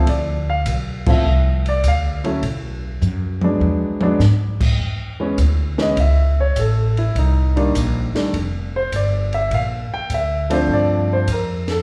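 Warm and swinging, this short excerpt from a longer jazz piano trio number moves at 102 BPM in 4/4, with a warm, short-sustained grand piano carrying the melody up front and taking a solo from 4.8 seconds, a woody, growly pizzicato upright bass sitting close beside it, and a compact cocktail drum kit with dark cymbals, a high-tuned snare and a punchy kick adding a fill from 3.0 seconds after the whole band lands an accent at 1.0 seconds, all set in a reverberant recital hall over changes that run from Dm7 through E7 and Cm9 to Bbmaj7.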